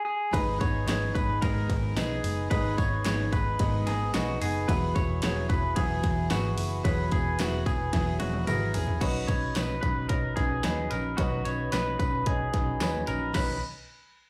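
A bright, twangy electric guitar through a small old amp plays slightly broken-up arpeggios with analog delay and slapback echo from the start of this nostalgic jangly indie pop piece at 111 BPM in B major, joined at 0.3 seconds by a full-bodied fingerpicked steel-string acoustic guitar, a woody, slightly detuned upright piano with its own slapback echo and a fill at 3.6 seconds, a round, foam-muted electric bass, a punchy pop drum kit with a fat snare and a fill at 7.9 seconds, and a faint, distant tambourine over chords moving from G#m to Eadd9 to Badd9, all heard as a live club gig through the venue's PA.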